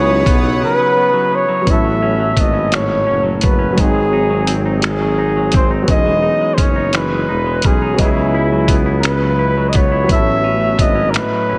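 Slow six-eight R&B in C# minor at 57 BPM, this yearning, sultry excerpt sets an up-front flugelhorn melody with light vibrato, scooped notes and slapback echo over a gritty, compressed sampler-style kit of finger snaps, hi-hat and thumpy kick that drops out between 0.6 and 1.7 s, while a vibrato-tinged tuba carries the bass, a clean, fingered semi-hollow electric guitar with warbly pitch drift plays a second line, a warm grand piano with its own slapback echo sits in the background accompanying chords such as C#m11 and Emaj13, a shimmering, retro chorused pulse-width pad sustains until 1.6 s, and a lush hall reverb lends a big arena sound.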